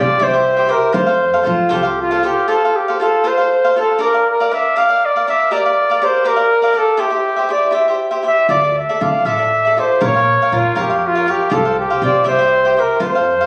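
A mellow trumpet with light vibrato and a soft attack carries a dramatic, passionate mariachi melody up front in this rubato 6/8 Mexican folk piece in F major at 80 BPM, over crisp picked acoustic cavaquinho and a woody, thumpy pizzicato upright bass that plays from 0.0 to 2.2 seconds and returns at 8.5 seconds, all heard through a moderate recital-hall reverb in a phone recording made in the room.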